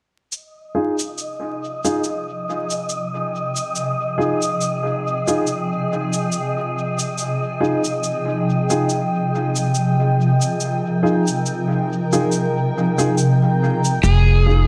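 Wrapped in vinyl crackle and a moderate echo-chamber reverb, this hazy, meditative ambient dub fragment opens on a muffled, pitched-down cabasa carrying dub echo. It is soon joined by a breathy wind-like noise layer and slightly detuned upright piano stabs moving through a filter sweep and dub echo. A blurred, evolving granular cloud pad then fades in over an Fm7 chord, before an overdriven slide guitar and a woody, thumpy pizzicato upright bass arrive up front at 14.0 seconds.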